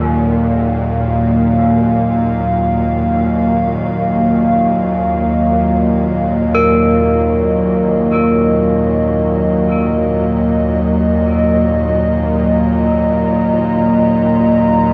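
Soaked in a long plate reverb, the recording has a dreamy, cavernous sound that sets an ominous tone for this dark ambient drone, heard as an excerpt from a longer piece that floats in free time over a single minor chord. Up front, a deep, moody analog pad holds sustained chords, its detuned, wave-folded tone thickened by a sub octave and chorus, with slow attacks and long releases. Beneath it, a bowed-like drone sits low and tense, bright and string-like with vibrato and its own reverb. A gamelan-type bronze metallophone rings out metallic arpeggios with a diffuse ambient delay and a boxy small-room character until 12.9 s. Very quiet and barely above a hush, a breathy, wind-like tuned noise texture hovers across the whole 14.9 seconds.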